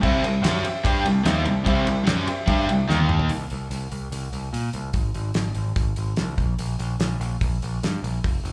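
A straight 4/4 pulse at 146 BPM drives this sunny classic rock clip, heard live through a club PA with light reverb and small-room ambience. A bright, woody upright piano with audible action noise plays alongside an overdriven electric guitar and a sludgy distorted guitar with slapback echo, both riffing in the background, until a drum fill at 2.9 seconds, after which the piano and guitars drop out by 3.3 seconds. The growling, up-front overdriven bass and a damped 70s kit with a fat snare, tight kick and dark cymbals carry on to 8.5 seconds.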